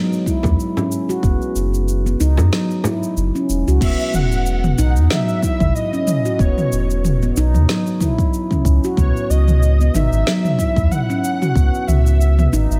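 Warm and peaceful, this organic downtempo excerpt rests on ringing handpan arpeggios with tape echo, a round up-front sub bass with sidechain pumping beneath a deep layered electronic kick, and a deep house kit with a woody snare, shaker, toms and crash. A very quiet quartz singing bowl and a small, bright frame drum color the opening, the kick drops out at 2.5 seconds, and a breathy, warbling flute-like synth lead with chorus and echo enters at 3.8 seconds.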